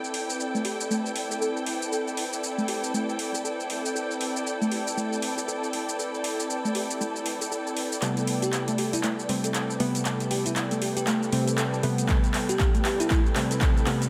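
A detuned analog pad on an Am9 chord, muted con sordino strings, metallic overdriven hats, handclaps and shaker open this smooth 118 BPM deep house excerpt in A minor with a 16th-note swing, joined at 0.5 s by a soft, round pluck arpeggio under tape echo, while from 8.0 s filter-swept sawtooth key stabs join a build-up and drum fill, followed at 8.4 s by a sparkling, bell-like FM electric piano melody with phaser, and a punchy kick arrives at 12.1 s, all bathed in a lush hall reverb.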